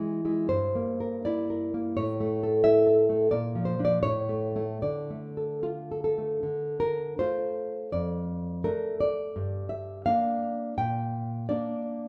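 A lone nylon-string guitar carries this short, romantic passage for solo classical guitar, its dark, thumb-plucked tone sitting up front in a light reverb. The mood is wistful and intimate, with a rubato feel in 2/4 that lets the phrases breathe and stretch. Ranging from F2 to G5, the guitar moves through harmonies built on E, a diminished chord over G, A and Bb before coming to rest on D minor around 4.8 seconds. A second section begins at 6.4 seconds, shifting through D minor with F in the bass and then G minor, closing on G minor over Bb. Cut from a longer piece, the recording captures a quiet, close-up moment of classical expression.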